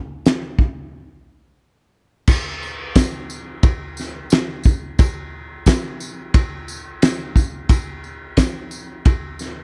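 A loose, acoustic indie rock drum kit opens this excerpt at 0.3 s, sitting up front with a punchy kick, a fat snare and dark crash, hi-hat and ride cymbals in a pumping studio room, setting a dusty, reflective mood at 89 BPM in a straight 4/4. After a break from 0.9 to 2.3 s, a jingly tambourine enters in a live room, tucked low beneath the kit. The overall sound is dry, with little reverb.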